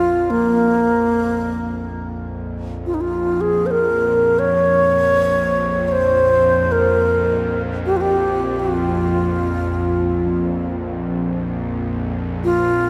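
World meditative music in free time, haunting and meditative, cut from a longer piece and set in a dreamy mix soaked in a lush hall reverb. Up front, a bright, reedy alto flute with a wooden head carries the melody in an airy straight tone, tongued and trailed by a diffuse ambient delay, over a tense, string-like drone that is detuned and sawtooth-edged, with slow attack, vibrato and a long release. At 10.3 seconds a bronze singing bowl, struck with a felt mallet, rings softly in the background with mellow, slow-beating metallic shimmer.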